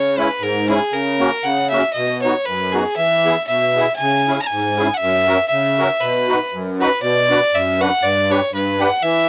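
A dry, gritty recording with vinyl crackle frames this bouncy, jolly alpine dance-band clip in lightly swung 2/4. A biting, earthy solo fiddle with light vibrato carries the melody up front over a reedy, shimmering musette accordion, and the tune moves from its opening section into a new one at 7.0 seconds.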